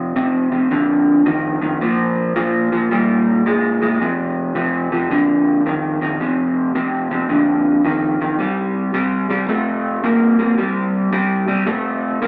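An electric guitar through a small old amp, dark and slightly broken-up with a lush chorus, plays alone in this rollicking, gritty blues excerpt at 109 BPM with a swung feel in F mixolydian, its fingered, compressed, lo-fi tone sitting up front in the club reverb of a live gig heard through the venue's PA as it moves through F5, Bb5 and C5 power chords over 12.3 seconds.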